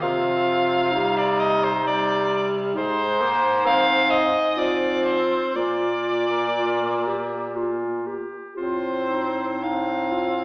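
Heard from further back in a recital hall with a wet, 1.4-second reverb and the narrow, boxy tone of AM radio, this short excerpt from a longer classical piece is a lyrical moment for a single-reed quartet, tuned to A4 = 445 Hz. The mood is serene and warm, moving in a slow, rubato 3/4 that drifts between 54 and 67 BPM. An edgy, close-miked soprano saxophone carries the melody up front with a light vibrato, while a mellow clarinet with a smooth top sings the second line beneath it. A tenor saxophone, soft-toned and vibrato-tinged, supplies the accompaniment from a distant, roomy position, and a clear bass clarinet, also set back in the room, anchors the bass. All four play throughout the 10.4 seconds over a gentle harmonic path from Cm through Ab, Fm/Ab and Bb, arriving on F7/A at 8.6 s.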